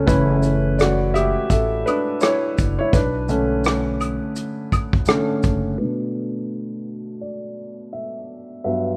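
A mellow felt-muted upright piano with cassette tape coloring sits up front in this reflective, nostalgic lo-fi hip hop fragment in B minor at 84 BPM with a swung 4/4 feel, moving from F#m7 to Bm7 over a woody, growly pizzicato upright bass, a muffled vintage brush kit with a punchy kick, hi-hat and rim click, and faint band-limited maracas and woodblock, until the rhythm section drops out around 5.8 seconds and the piano carries on alone under a filter sweep to 9.0 seconds, all in a small, lightly reverberant room with a rough home-demo character.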